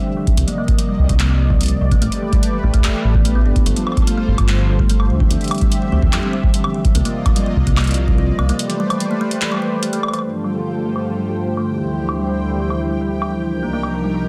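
A dark, detuned saw bass rumbles up front for the first 8.5 seconds of this intricate, cerebral IDM passage in G minor at 146 BPM, alongside a deep electronic kick and a booming analog drum machine with metallic hats, handclaps and woodblock re-recorded in a large room, while a woody, ringing kalimba plays filter-swept arpeggios with tape echo over a smooth, chorused, sidechain-pumped analog pad, and after a break at 8.6 seconds a bubbling, resonant stepped-filter texture enters at 10.2 seconds, all set in light digital ambience within a dense, heavily limited modern master.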